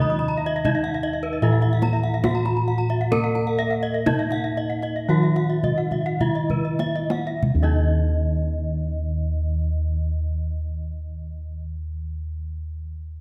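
Bossed bronze gongs sit up front and carry the bass with a round, beating tone, giving this Balinese gamelan excerpt its ceremonial weight. Over them, a bronze metallophone struck with a wooden mallet carries the melody, while a lower metallophone supplies accompaniment. Both are close and dry, with the shimmering beats of paired tuning. Two higher metallophones played with horn mallets spin bright, ringing arpeggios, one of them set further back in the mix. A kendang, tight and played with soft hands, enters at 0.5 seconds and plays a fill from 5.9 to 7.4 seconds, as the straight 4/4 pulse slows within a range of 47 to 84 BPM before a new section begins at 7.4 seconds. The whole ensemble rings out in a moderate recital-hall reverb, and the mood is ceremonial and brilliant.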